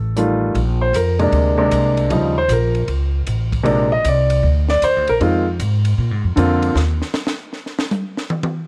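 Relaxed and sophisticated, this short jazz piano trio excerpt swings at 155 BPM in 4/4 in Bb major, cut from a longer piece. A smooth, vintage grand piano sits up front carrying the melody from C3 to Eb5, soloing from 0.6 seconds over chords that move through Bb9, Eb7(no3), Bbadd9 and Fm7. Pizzicato upright bass, woody and growly with steel strings, also sits up front, holding the low register from A1 to Bb2. The compact cocktail drum kit is dry and sits further back, with dark cymbals, a high-tuned snare and a punchy kick across hi-hat, ride and toms. At 6.8 seconds the harmony drops out and the drums take a brief solo to the end, all wrapped in light reverb and small room ambience.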